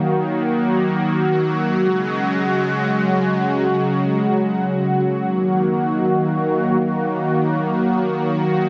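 This hip hop fragment unfolds in free time in Eb minor, tuned slightly sharp to A4 = 444 Hz, with a spacious, ethereal mood. A single analog pad carries it alone for the full 8.7 seconds, ranging from Db3 to Gb4 with soft attacks, sustained tones and a long release. Its detuned sawtooth voice sounds smooth and bright, sitting up front with chorus and a moving notch that gives the tone a shifting color. The harmony moves from Ebm to Gbsus2 at 1.8 seconds and settles back on Ebm at 5.3 seconds. A huge ambient reverb with a 4.8-second decay surrounds the sound, and the passage is cut from a longer piece.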